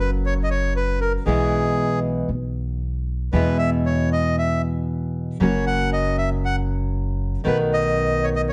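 Tango in E major at 116 BPM with a rubato feel, nostalgic and elegant, in which a reedy, bright, close-miked bandoneon carries the melody up front over a fingerpicked, deep classical nylon-string guitar and a woody pizzicato upright bass on steel strings, all three playing throughout this 8.5-second excerpt cut from a longer piece, with the dark production placed in a moderate large studio reverb.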